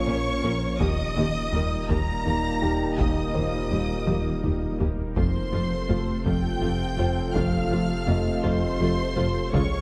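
Cinematic hybrid orchestral and electronic film score in 6/8 at 55 BPM, tense and relentless. A rich, lush violin section carries the high vibrato melody over a second violin line, with expressive violas, cellos and bowed double basses very quiet beneath, all over mellow French horns and soft-attack trombones holding sustained chords, an evolving, warbling wavetable pad with chorus and its own reverb, a deep saturated sine sub bass, a punchy, funky analog bass riff, ringing harp-like synth-pluck arpeggios with a moving notch filter, and a dark concert grand adding faint texture. The harmony moves from Bbm to Eb to F in a dark, wet concert-hall space, while a close, dry taiko ensemble enters at 0.8 seconds and plays a fill between 4.1 and 5.2 seconds.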